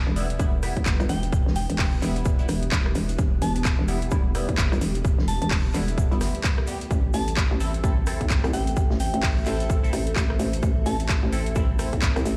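Bass house, aggressive and swaggering with a 16th-note swing, built on an overdriven, punchy kick up front and a hollow, bouncy FM bass with overdrive, while a garage kit of metallic hats, handclaps and rim clicks and a very quiet acoustic kit of snare, hi-hat and shaker fill out the groove, a nasal band-passed chord stab with phaser and delay and a gentle warbling synth bell from 1.1 to 11.0 seconds sit over a dark, moody analog pad and a blurred granular cloud pad in the background, the pads and stabs pumping against the kick as the chords move from Em to Am at 6.9 seconds, all heard through a big system in a bare room with large studio reverb.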